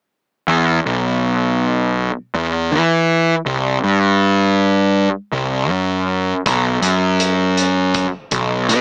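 A fuzz-laden picked electric bass opens at 0.5 s, overdriven, direct and amped, sitting up front in E minor at a steady 80 BPM in 4/4. This short cut from a longer quiet-loud alternative rock piece feels cathartic and angsty, with a dry, small-speaker sound. At 6.5 s a loose indie drum kit joins on hi-hat and a punchy kick, its acoustic studio room pumping in the background beneath the bass.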